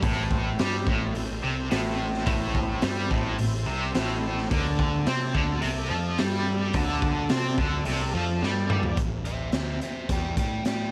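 A dry, lo-fi mix puts a muffled, gritty garage drum kit with a punchy kick up front, in this brooding, smoky slice of blues rock and southern rock at 107 BPM in A minor. A bright, double-tracked stack guitar drives an overdriven riff with harmonic tremolo over a fuzzed bass and a thick, key-clicking tonewheel organ that holds chorus-vibrato chords in the background, moving from Am to D5 at 4.5 seconds. After a drum fill at 8.4 seconds, the riff and organ stop, and an overdriven slide guitar enters at 9.3 seconds with a short melody over bass and drums.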